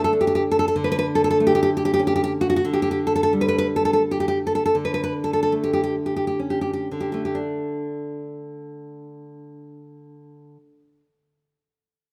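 A romantic solo classical guitar excerpt in 3/4 with a sunny, tender mood and a rubato pulse between 58 and 97 BPM, where a full-bodied, fingerpicked nylon-string guitar sits up front in a moderate recital-hall reverb, moving through D5, A/D and G5/D harmonies and slowing from 1.7 to 7.4 seconds before playing on until 11.0 seconds.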